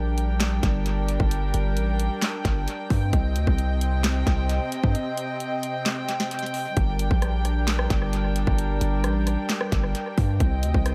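Eerie and menacing, this half-time trap hip hop fragment sets a dark, floating section of bowed strings playing sul tasto chords over a deep, sine-toned 808 bass with a fast attack that decays, while an electronic trap kit of hard-clipped kick, sharp snare, bright hi-hats, handclaps and rim clicks, soaked in tape echo, enters at 0.2 seconds and sits up front in a dry, echo-heavy mix, with a break from 4.9 to 6.8 seconds.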